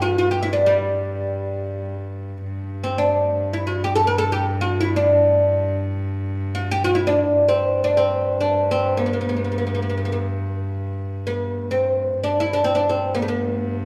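Set in a recital hall with a wet reverb, this stately fragment of an Arabic maqam ensemble piece unfolds in free time in G maqam rast. A bright, woody, plectrum-plucked fretless oud with double strings carries the melody up front between G3 and Bb4+50c, while a single bowed cello holds a floating, soft-attack sul tasto drone on G2 beneath it throughout.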